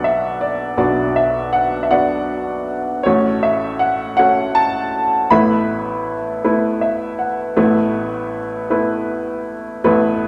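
In a straight 6/8 lilt, this melancholic, intimate acoustic folk-pop ballad fragment features a lone upright piano, woody, slightly detuned and up front, moving from Bm through F#m/A to Asus2 and adding a short fill at 6.4 s before a new section begins at 7.6 s, all bathed in the wet reverb of a recital hall.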